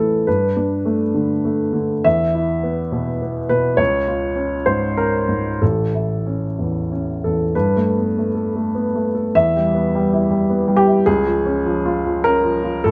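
A lone upright piano opens this short, intimate fragment of neoclassical minimalist music, its tone warm and woody, natural and up front. Played in 3/4 with a rubato feel, it drifts between roughly 92 and 107 BPM, and its hopeful G lydian colour moves through Gadd9, E5, C# and A chords. At 7.5 s the opening passage returns, now passing from Gadd9 through Em to C#. The piano spans from A1 in the low bass up to E5, and a moderate stone-room reverb with a one-second tail surrounds it. The piece plays solo from 0.0 s to 12.9 s, where it is cut from a longer work.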